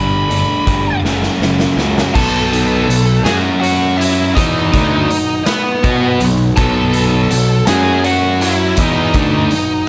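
In a straight 6/8 at 54 BPM, this anthemic, bittersweet stretch of quiet-loud alternative rock in B mixolydian, cut from a longer piece, puts a warm, bluesy overdriven lead guitar melody with slapback echo up front over a bright distorted riff guitar and a dark, lo-fi arpeggiated guitar through a small old amp, both sitting in the background, while a growly fuzz-picked bass and a gritty, saturated garage drum kit with a punchy kick and pumping stone-room sound drive the Gadd9, F#5 and B changes, a drum fill arrives at 1.0 seconds and a very quiet, biting overdriven guitar riff joins at 2.1 seconds, with light small-room reverb around the band.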